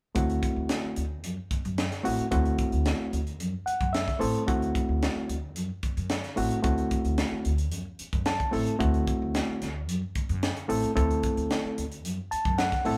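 An overdriven reed electric piano anchors this bright, funky slice of electric jazz fusion, its barky, gritty tone pushed through a combo amp and sitting up front as it comps over a D9 chord. The piano breaks into short fills at 3.4, 8.0 and 12.0 seconds, adding reedy flourishes to its accompaniment. Beneath it, a plucked upright bass with steel strings gives a woody, growly low end. A crisp acoustic fusion drum kit, also placed up front, pairs a punchy kick and a high-tuned snare with hi-hat, with a pumping small-room character. The band plays live together in one room, wrapped in a moderate large-studio reverb, and the passage is cut from a longer piece.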